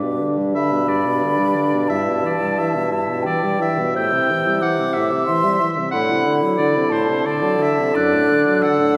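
A pure, hollow concert flute carries the melody high above the ensemble, its soft attack and vibrato giving this tender, serene slow movement for wind quintet a gentle glow. Set in a lilting three-time with a rubato feel, the piece drifts through a progression that opens on G, passes through Em/G and Am7, and settles toward D/F# near 8.0 seconds. A bright oboe with light vibrato enters at 0.6 seconds with a present second line, while a warm clarinet and a distant, roomy French horn fill out the accompaniment beneath. A vintage-toned bassoon grounds the texture as the bass voice, sitting slightly forward in the mix. The whole ensemble is heard from further back in a wet scoring stage, with a long reverb tail wrapping the brief passage, cut from a longer piece, in a calm, spacious bloom.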